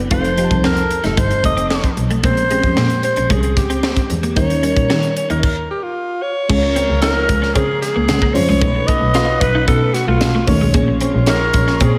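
Soaked in lush hall reverb, this glossy, urban slice of polished 1980s jazz-funk pop moves at 113 BPM in a straight 4/4. A raspy, growling alto saxophone with scooped notes carries the melody up front over a tight, acoustic funk drum kit with a high-tuned snare, a focused bowed double bass, a glassy, bell-like FM electric piano with analog chorus, and a dark, picked electric guitar riff set back in the mix. After a stop from 5.4 to 6.5 seconds, a smooth jazz-style horn section doubled in octaves enters with a second line as the chords move from Dbmaj7 through B9 to Bbm9.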